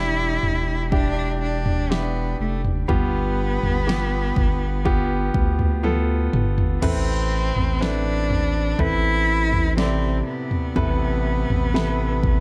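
A slow, straight pulse carries this heartbroken pop ballad excerpt, with a deep house drum kit of layered electronic kick, fat snare, toms and crash entering at 0.4 s and playing a fill from 5.8 s into the second section at 6.8 s. Over it, a single bowed cello sings the longing melody with vibrato, soft attacks and portamento, while a clear, intimate concert grand piano supplies polished, long-sustaining chords, its action noise audible. A thick, saturated sine sub bass sits up front beneath them, and the whole mix is dry.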